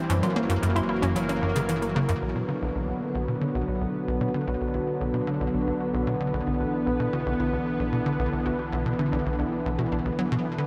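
A bright, detuned unison pad holds chords with chorus and shimmer reverb over a warbling, very quiet analog drone and faint wave-folded pluck arpeggios, while a punchy, saturated sequencer bass riff drives up front through tape echo and an overdriven electronic hi-hat and woodblock tick along until 2.2 s, as this expansive, mysterious slice of ambient, sequencer-driven space music moves from F#7 to Bm inside a huge reverb.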